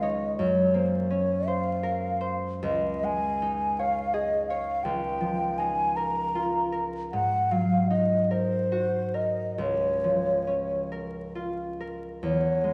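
In a rubato 6/8, this luminous, dreamy impressionist classical duo sets an airy, hollow concert flute singing the melody with vibrato and tongued notes over the bright, ringing fingerpicked chords of a concert harp, both up front yet heard from further back in a reverberant recital hall, with faint vinyl crackle around this fragment cut from a longer piece.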